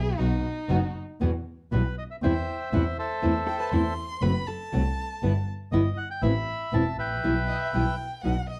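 A dark production with light reverb frames this dramatic, tense tango, cut from a longer piece and set in E harmonic minor at 119 BPM in 4/4 with a rubato feel. A close, bowed violin takes a solo turn for the first 1.2 seconds, singing with vibrato and portamento. Beneath it, a distant studio string section adds brief soft-attack stabs, and an up-front bowed double bass anchors the low end with a smooth-topped, expressive tone and gliding slides. A small, fingerpicked nylon-string guitar carries the accompaniment, with finger squeaks audible, and at 1.7 seconds a reedy, band-limited bandoneon with a vintage character steps forward with the melody. Midway, a compressed hollow-body electric jazz guitar adds a clean, picked second line in the background, while the harmony moves through Emadd9, C/E, F#dim and Amadd9 before resting on Em/B.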